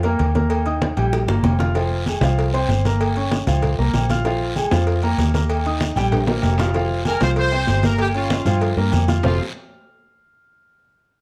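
A dark, mellow concert grand piano and a round, foam-muted fingered electric bass open this driving, passionate F minor salsa excerpt at 192 BPM, set over ringing agogo bells and timbales, thick-skinned congas, and soft-handed cowbell and bongos, with a raspy guiro joining at 1.8 seconds and a tight horn section with light vibrato taking the melody from 7.1 seconds in a light reverb.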